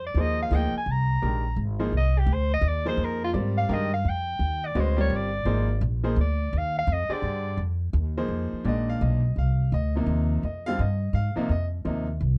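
A breathy soprano saxophone and a woody, plucked upright bass open this modal jazz passage together, and a bright upright piano enters a moment later. The mood is spiritual and searching, carried by a swinging waltz feel in three. Up front, the saxophone plays a vintage-toned jazz solo with scooped notes, ranging from F4 to Bb5, before dropping out at 7.6 seconds. The thumpy, steel-strung bass holds the low end, while the brilliant, polished piano supplies accompaniment over harmony that moves from Fm7 to Gm7 and back to Fm7. Light reverb frames a dark, warm production, and the bass carries on briefly after the piano, to the close at 12.4 seconds.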